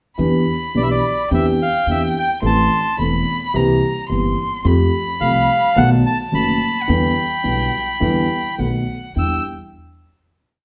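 A marcato-in-four tango pulse, stretched with rubato, anchors this brief, dramatic and melancholic tango piece, where a dark, mellow grand piano and a woody, thumpy pizzicato upright bass mark the beat. From 0.8 s a reedy bandoneon carries the motif-based melody up front, set in plate reverb, while a single bowed violin sings an expressive counter-melody with vibrato and portamento. The ensemble is heard from further back in a wet club room, and the piece settles on a final chord at 9.2 s.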